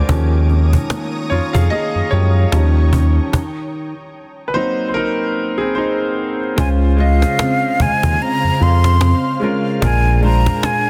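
A studio ambience with light reverb and a dense, heavily limited modern master frames this dreamy, romantic contemporary R&B piece in Db major, taken from a longer work and moving at a relaxed 74 BPM in 4/4 with a gentle sixteenth-note swing. A clear concert grand piano with deep bass and long sustain carries the accompaniment and takes a solo turn through the opening section, which includes a stop in the band, while a smooth, mellow sawtooth-and-triangle synth bass sits up front underneath. A woody, close and dry cajon with faint snares keeps the groove, and a dark, thumb-plucked nylon-string guitar adds delayed arpeggios from the background. An ethereal, airy pad of detuned unison voices, slow to bloom and long to fade, holds sustained chords under a shimmering ensemble chorus and its own reverb. At 6.6 seconds a breathy, hollow silver concert flute enters up front with vibrato and tongued notes through a digital delay, as the harmony moves from Eb7sus4 and Ab9 toward Dbmaj7 and Bb7.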